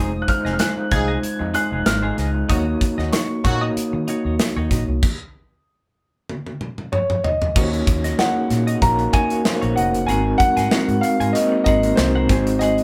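A nocturnal, urban slice of polished 1980s jazz-funk pop opens with a dark, long-sustaining grand piano melody over a gritty, barky tine electric piano with fast tremolo, a clean, twangy picked guitar riff, a round, foam-muted fingered bass and a brief tight, octave-doubled horn line that drops out at 3.6 seconds, with the airy studio drum kit joining at 0.3 seconds. The band then halts for a stop, broken by a drum fill at 6.3 seconds before the groove resumes over a swung sixteenth-note feel. The whole band sounds as if playing live together in a small, wet room, with the overdriven electric piano and the tight-kicked drums sitting up front.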